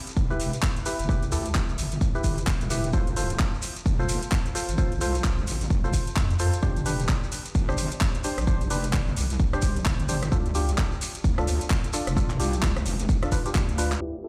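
A heavy, saturated wobble bass with chorus and sidechain pumping drives this swaggering, bouncy bass house excerpt at 130 BPM with a swung 16th feel, sitting up front beside a punchy electronic kick while a garage kit with handclaps, rim clicks and metallic filtered hats, a grainy acoustic shekere, and hollow, dark organ stabs with delay move through Em, F, Gsus4 and Dm in a stone-room sound, until a drum fill from 13.6 s leads into a faint warbling tape-like pad at 14.0 s and a barely audible downlifter at 14.3 s.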